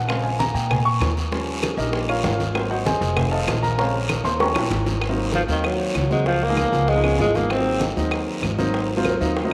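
A brisk 194 BPM pulse in 4/4 drives this lively, danceable Afro-Cuban jazz excerpt in Ab mixolydian, carried by tight, high-tuned bongos, woody claves, raspy guiro and low-tuned, thick-skinned congas sitting very quietly underneath. An upright piano with an intimate tone and audible action noise sits up front, taking a solo over the opening five seconds as the chords move from Bbm7 through Eb9, Ab9 and F7. A pizzicato upright bass with steel strings anchors the low end from F1 to Bb2 throughout. A drum fill at 4.3 seconds leads into the second section, where a breathy alto saxophone enters at 5.4 seconds, up front with a clear subtone, light vibrato, scooped notes and a slapback echo, playing a short vintage-flavored jazz line over Ab9 and Db9. A lush plate reverb with a long tail bathes the mix, and the passage is cut from a longer piece.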